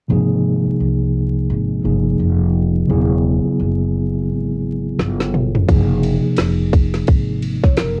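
A home-cassette recording with vinyl crackle and light reverb frames this smooth, relaxed jazz-hop excerpt at 86 BPM in Ab major, swung on the sixteenths. A mellow tine electric piano, up front and tinted by tape, moves through Abadd9, Eadd9 and Gbmaj9 chords above a growly, thumpy pizzicato upright bass from the start. At 5.0 seconds a tight, layered garage kit with a woody snare and metallic hats enters with a drum fill that runs to 5.7 seconds.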